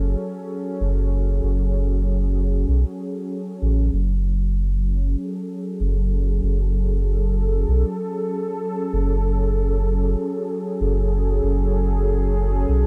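The rhythm sits in an unhurried 4/4 at 96 BPM with a 60% swing on the sixteenths, giving this ambient dub fragment a loose, lilting pulse. The mood is spacious and hazy, resting on a single F# minor chord in a tuning of A4 = 442 Hz. A soft dub sub bass anchors the low end from the opening moment, deep and round with a triangle-and-square character, a fast attack and sustained notes held up front in the mix. Above it, a warm analog pad of detuned sawtooth tones holds sustained chords, its soft attack, smooth mellow surface and chorus shimmer also placed close to the listener. A light digital reverb lends the sound a gentle sense of space, and the passage, cut from a longer piece, ends at 12.9 seconds.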